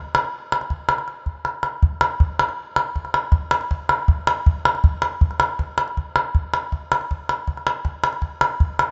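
West African traditional percussion in a flowing, warm 12/8 at 106 BPM, this short excerpt features a solo calabash, small and acoustic, sitting up front in a small room with light reverb, marked by a drum fill at 1.3 seconds and captured in a rough home-demo mix whose top end is dulled.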